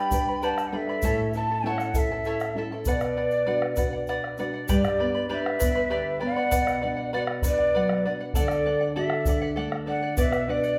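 A cane quena carries the wistful melody from the first moment, breathy and hollow with vibrato and tongued notes, sounding distant, while a bamboo pan flute sits in the background on a second line, its mellow tone marked by a soft chiff. Beneath them a brilliant, fingerpicked charango shimmers on double strings, some doubled at the octave, and a dark, full-bodied nylon-string guitar adds classical fingerpicked accompaniment with audible finger squeak. A round bombo, close and dry, enters at 0.1 s alongside a grainy egg shaker. This earthy Andean folk fragment, cut from a longer piece, moves at 66 BPM in 6/8 in B minor, with harmony passing from G and A to B minor, then through D before returning to B minor near 10.2 s. The ensemble plays live together in one large studio room, and a wet reverb gives the whole sound a sense of space.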